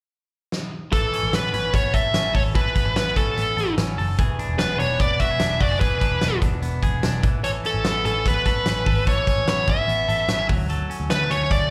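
Jangly indie pop with a breezy, nostalgic mood, this short cut from a longer piece opens with a drum fill from a big, punchy rock kit before a dark, smooth overdriven lead guitar carries the melody up front from 0.9 seconds. Beneath it, a bright, twangy clean electric guitar picks arpeggios through spring reverb while a round, foam-muted vintage bass holds the low end, moving through Aadd9, E7 and Dmaj7 chords. The whole band sounds like a live gig heard through a club's PA, with the room's reverb around it.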